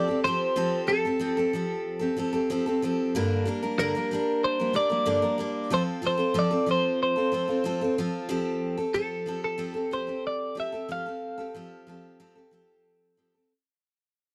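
Jangly and nostalgic, this short rock excerpt at 93 BPM in F major sets a twangy, compressed twelve-string electric guitar melody with subtle chorus over a full-bodied, fresh-stringed dreadnought acoustic guitar whose picked accompaniment carries audible finger squeak, both parts up front in a dry, close 1970s-style studio sound with light reverb, moving through Fadd9, Gm and F before the melody stops at 12.8 seconds within a fade-out that begins at 8.3 seconds.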